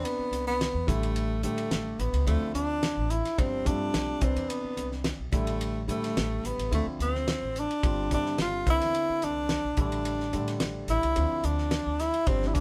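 A band playing live in one small room, with moderate reverb, opens this funky, slick passage of electric jazz fusion, cut from a longer piece, at 108 BPM in a straight 4/4 and D dorian. Up front, a close-miked tenor saxophone carries the solo melody in a soft-attacked subtone with light vibrato, while a concert grand piano with deep bass accompanies through a cycling Cmaj9, A7sus4, Dm9, G7sus4 progression. Underneath, a woody, thumpy pizzicato upright bass plays alongside a dry, up-front 70s drum kit with a fat snare, a tight kick, hi-hat and ride cymbal, the drums entering at 0.1 seconds.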